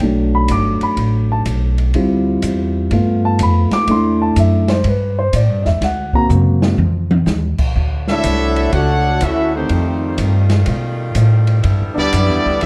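Brassy and joyful, this excerpt of big band swing moves at 124 BPM with a swung 4/4 feel, opening with a dark, mellow baby grand piano solo over woody, growly upright bass and a small-room jazz kit with a boomy kick and dark cymbals. The piano drops out at 6.8 seconds, partway through a drum fill that runs from 6.3 to 7.3 seconds. Then an edgy saxophone section holds sustained chords in the background while a clear, up-front trumpet section carries the melody from 8.1 seconds over a trombone section's second line, all in a lightly reverberant, warm mix.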